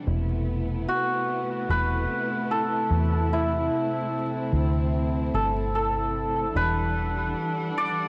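Trip hop at 74 BPM with a swung, cinematic and brooding feel, this cut from a longer piece sets a soft, sul tasto string section holding cassette-worn chords over a round, punchy dub bass with tube saturation, while a bright, shimmering santur enters at 0.9 seconds carrying the melody through tape echo, moving from Amadd9/E to Em9 at 6.5 seconds amid light reverb and vinyl crackle.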